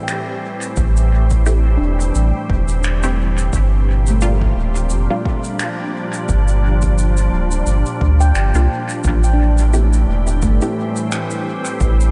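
A chorused, organ-like pad holds sustained chords while a dark, ringing handpan arpeggiates behind it, joined almost at once by finger snaps and a shaker with dub echo, opening a meditative, deep stretch of ambient dub from a longer piece. At 0.8 s a round, up-front sub bass arrives alongside a punchy, layered electronic kick set in the background, and from 1.5 s a muted, resonant chord stab with phaser and dub echo flickers in the background. The harmony moves from Am7 to Gm7 and returns to Am7 at 9.0 s, all within a small, lightly reverberant room.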